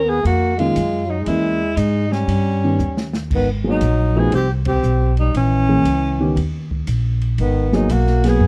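This fragment of a longer jazz piece has a dry, close studio sound in a 1970s style, with barely any reverb. It is cool, smoky small-group swing and bop at 118 BPM in 4/4, with a firm swing feel in G# minor, tuned a touch flat at A4 = 436 Hz. A breathy, whispered alto saxophone carries the melody with light vibrato and a soft attack, sounding intimate yet slightly distant. A clear, punchy trombone plays a forceful second line beneath it. A woody, thumpy upright bass with gut strings sits up front, while a mellow grand piano with short sustain comps over a ii–V progression that keeps returning to G#m9. Quietly in the background, the kit brings dark cymbals, a boomy kick and a rolled-off top, adding a drum fill from 2.8 to 3.3 seconds before the whole band hits an accent at 4.6 seconds.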